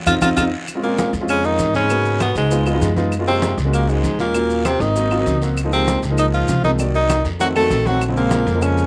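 Set in light reverb and small-room ambience, this sultry, sophisticated Afro-Cuban jazz fragment opens with a band accent, then a breathy tenor saxophone with vibrato and scooped notes carries the melody up front over a natural baby grand piano, a thumpy, gut-strung pizzicato upright bass, and background ringing congas, woody claves, raspy guiro and grainy maracas, while a clear baritone saxophone enters at 0.8 s with a subtone second line.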